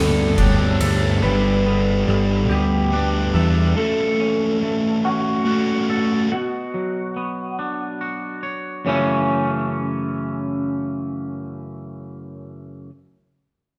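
In a slow, straight 6/8 sway, this brooding, cinematic post-rock passage opens thick, with a dark fuzz guitar riff that stops at 1.2 s, a brief burst of boomy kick and dusky ride from an oversized, low-tuned drum kit, and a warm, up-front fuzz bass that also drops out early. A sludgy overdriven guitar riff carries on until 6.3 s, while a bright vibraphone rings softly in the background with arpeggios until 3.8 s. Throughout, a clean, twangy guitar plays arpeggios with a warbly pitch drift alongside a slightly broken-up small-amp guitar melody washed in phaser, the whole band playing live in a wet stone room.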